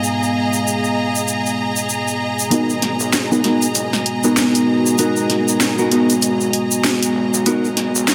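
Bathed in a lush hall reverb, this gritty, playful glitch hop excerpt opens with a moody, detuned analog pad, dark, clean electric guitar stabs under a filter sweep with spring reverb and tape echo, a grainy egg shaker and smooth bowed symphonic strings, before an up-front, overdriven drum kit with a cracking snare and bright hats and a very quiet, saturated synth bass enter at 2.5 s to begin a build-up.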